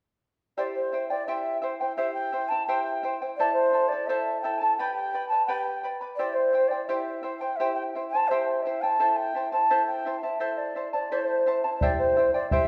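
Andean folk at 85 BPM in 2/4, wistful and earthy, with a mellow large quena carrying the melody in a pure, straight, tongued tone over the shimmering, fingerpicked double strings of a charango moving through C, A minor and G. A round bombo enters only at 11.8 s, just before this excerpt ends at 12.7 s. The ensemble sits in the wet reverb of a recital hall.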